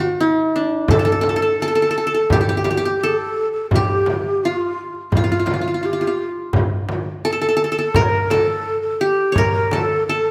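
A qanun and a darbuka open this festive, passionate Arabic maqam ensemble piece, a short cut from a longer performance in a straight 4/4. The qanun carries the melody up front, its fingerpicked triple strings sounding bright-edged and warm as it moves between D4 and C#5. The darbuka sits close and dry, its clay shell and natural skin struck with hard hands. At 0.9 seconds a breathy, mellow ney joins on a second line, its end-blown reed cane tone tongued and shaded with vibrato, placed distant and a little unsteady. A deep, large frame drum enters at the same moment, also played with hard hands and set back in a large room. A moderate stage reverb lends the recording a sense of space, and the frame drum stops at 9.9 seconds, just before the close.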